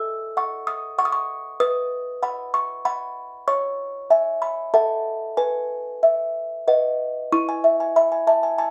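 Innocent and dreamy, this short passage from a longer classical lullaby is played by a solo music box in 3/4 with a rubato feel. The music box sounds delicate and tinkling, its plucked tones sitting up front with a boxy small-room character and light reverb, moving between E4 and E6. The harmony moves from F#m7/A through B and C#m, returning to F#m7/A before E/B and B prepare the way. At 7.3 seconds a new section begins, settling onto E until the music box stops at 8.7 seconds.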